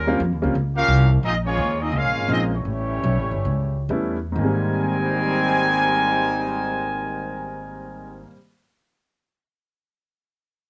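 A swinging 4/4 groove with a 62% eighth-note swing drives this brassy big band jazz excerpt in Ab major, its tempo ranging from 123 to 175 BPM and slowing between 1.2 and 4.4 seconds before a new section arrives at 4.4 seconds. A warm trumpet section with slapback echo carries the melody, sounding distant yet up front, while a bright trombone section with light vibrato plays a second line and a woody pizzicato upright bass anchors the bottom. A clear concert grand piano adds polished, intimate accompaniment with audible action noise and long sustain, the whole piece captured dry outdoors with little reverb.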